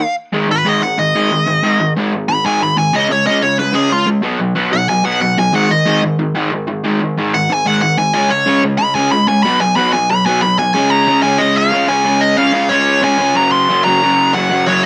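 A bright, biting overdriven lead guitar carries an upbeat, rebellious punk solo from 0.3 seconds, picked high and up front over a straight 4/4 feel. Beneath it, a raw, double-tracked garage guitar plays a picked overdriven riff in the low register, with a light reverb on the recording. At 10.8 seconds the piece moves into a new section before this cut from a longer track ends.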